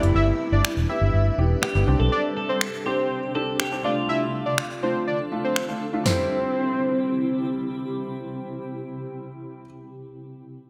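A punchy analog drum machine drives this upbeat, euphoric dance-pop excerpt at 122 BPM in straight 4/4, its finger snaps, hi-hat, snare and toms bathed in gated reverb until 6.2 seconds, while a dark, round, foam-muted electric bass sits up front and drops out at 2.1 seconds along with a very quiet downlifter. A bright, twangy twelve-string electric guitar with lush chorus carries the melody over an intimate grand piano, its action noise audible, and a cloudy, evolving granular pad holds sustained chords through G6, Csus2, Dm and C in C major. A fat, detuned sawtooth lead with vibrato, chorus and digital delay adds a second melody up high from 0.2 until 7.5 seconds, all set in a bright 1980s-style digital production with light ambience.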